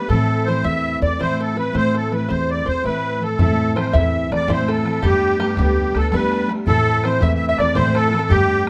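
A reedy, shimmering musette accordion carries the melody up front in this dark, spirited Celtic slip jig in 9/8, with a plunky fingerpicked open-back banjo playing a second line in the background. A full-bodied fingerpicked steel-string guitar and a woody pizzicato upright bass fill out the accompaniment over Am and Gadd9 chords. A boomy, distant bodhran joins at 3.4 seconds, all within a small room's moderate reverb in this brief cut from a longer piece.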